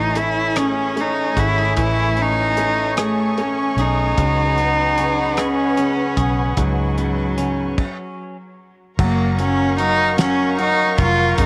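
A single bowed cello carries the melody up front in this heartfelt, tender six-eight pop ballad, played sul tasto with a soft attack, light vibrato and an airy, intimate tone, trailed by a tape echo. Beneath it, a concert grand piano gives polished accompaniment with deep bass, long sustain and audible action noise, while a close studio string section holds sustained chords with a smooth top. A bright, clean electric guitar, recorded direct and compressed, picks arpeggios in the background until 8.4 seconds, and a foam-muted fingered electric bass adds a round, dark, amped low end. A damped 70s drum kit keeps a slow 50 BPM pulse with a fat snare, tight kick, rim clicks, hi-hat and dark-toned cymbals. The harmony moves from Amaj7 to C#7sus4, a stop falls between 7.8 and 9.0 seconds, and a new section opens on F#maj7, all set in a small room with light reverb in this excerpt from a longer piece.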